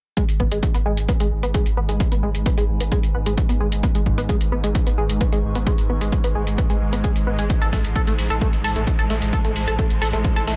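Hypnotic and driving, this fragment of peak-time techno is anchored by an up-front, punchy kick and metallic, pumping hi-hats, with a thick, saturated sub bass filtered low beneath them. A tight, detuned sawtooth riff with a plucky filter, chorus, phaser and digital delay pumps against the beat, while a swarming, granular drone joins at 1.1 s and a dark, warbling lo-fi pad fades in far in the background. The mix is dry overall, and the harmony shifts from G# minor to A minor at 7.5 s.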